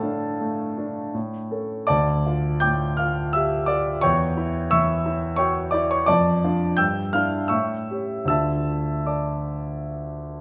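A clear, polished grand piano plays alone in this stormy, passionate romantic character piece in D minor, moving in a rubato 3/4 at roughly 74-88 BPM and ranging from D2 up to G6. Cut from a longer work, the passage opens on D minor over A, leans through a diminished chord and an A7, and comes to rest on D minor at 8.3 seconds. The piano sits up front within a moderate recital-hall reverb that adds space while keeping its voice present.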